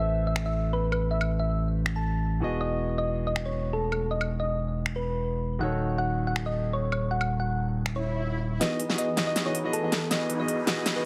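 Heavily compressed with a radio-like sheen and light reverb, this lush, bright future bass excerpt moves in a half-time, lightly swung feel. A round, tine-like synth pluck with chorus and delay carries the melody over a warm concert grand piano and a thick, saturated sub bass. Meanwhile, an up-front, layered electronic kit of finger snaps, crisp hats, woodblock and a huge snare sits in a small room; a very quiet swell arrives at 8.0 seconds, and at 8.6 seconds the bass stops as detuned supersaw chords enter under a filter sweep, building with a drum fill and riser until the cut at 11.1 seconds.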